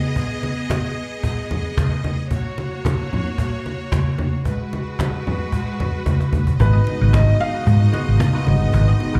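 Driving and glamorous, this disco cut at 112 BPM in G# dorian sounds like a live gig heard through a club PA, with light reverb around the whole band. It opens on cajon with snappy snares and soft hands, ringing low-tuned congas, and a clear, lush string section bowing a second line with vibrato and a slapback echo, over G#m moving to F# and then G#m7. A drum fill at 6.1 seconds leads into the fuller second part at 6.6 seconds, where a round, punchy hollow-body bass takes the front of the mix. A baby grand piano carries the melody there with audible action noise and long sustain, while a worn, barky tine electric piano, lightly overdriven through a combo amp with phaser and slapback echo, and a very quiet, compressed clean guitar fill in the accompaniment. A mellow, distant French horn section holds sustained chords far back in the room.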